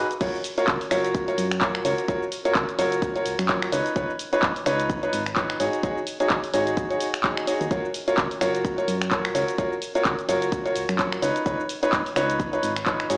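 Piano house at 128 BPM in F# major with swung sixteenths, uplifting and euphoric, cut from a longer piece and sitting in a drop from 0.2 s, where a clear, boxy, up-front concert grand piano riff with short sustain pumps against the sidechain through a digital delay over a round, dark FM bass that also pumps, while a punchy analog drum machine drives cabasa, crash cymbal, finger snaps, handclaps and hi-hat above a layered electronic kick, all moving through F#maj7, C#9 and G#7sus4 chords inside plate and stone-room reverb with a small-speaker sound.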